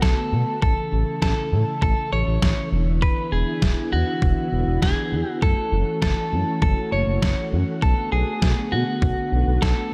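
A smooth, gliding sawtooth synth bass with portamento sits up front beside the thumpy kick and medium-tuned snare of a detuned 8-bit digital drum machine, re-recorded in a small room, while a clean, compressed electric guitar picks the melody through subtle chorus and tape echo over mellow, organ-like ensemble string chords, giving this cool, melancholic synth-pop fragment in B dorian at 100 BPM a dark, lightly reverberant digital ambience as it moves through Bm7, A, E7 and F#m7.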